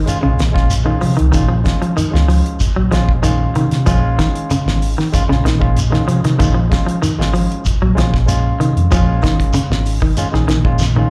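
A straight 4/4 afrobeat groove at 95 BPM, driving and defiant, is set by a damped 70s drum kit with a fat snare and tight kick sitting up front, a round, dark fingered electric bass, and a grainy, mellow shekere heard distantly as if in a large room, while a bright, clean semi-hollow electric guitar picks arpeggios through spring and plate reverb with slapback echo and a barky tine electric piano adds direct accompaniment over a vamp between Bbm7 and a third-less Eb7, all captured as a live gig through the venue's PA with club reverb, until a drum fill at 10.8 seconds closes this cut from a longer piece.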